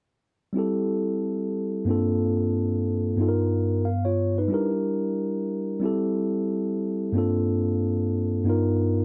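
A mellow tine electric piano carries this short hip hop cut on its own, playing from 0.5 to 9.0 s across a range from G2 to F5. The mood is smoky and mellow at 91 BPM in 4/4, with a 61% swing on the sixteenths and the music centred in G dorian, tuned to A4 = 439 Hz. The piano's tone is clean and direct, sitting up front in the mix. Its harmony moves through Am7/G, Gm11, G7alt and Gm6 before circling back through Am7/G, Gm11 and G7alt. The sound is dry and close, in the manner of a 1970s studio recording, with a moderate booth ambience and a short 0.2-second decay.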